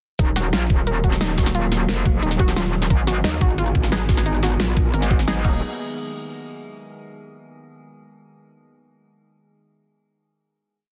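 Dark and aggressive, this technical drum and bass piece at 177 BPM in Eb minor drops at 0.2 seconds with a knocking electronic kick and a tight dubstep kit of huge snare, bright hats, shaker and crash under an up-front, overdriven metallic wobble bass, while a lo-fi, warbly pluck loops a 6-step arpeggio that drifts against the bar over an eerie inharmonic FM drone in the background; a second, tube-saturated wobble bass joins at 3.2 seconds, muted filtered dub chord stabs echo in at 3.9 seconds, and the dense, heavily limited track closes on a final hit.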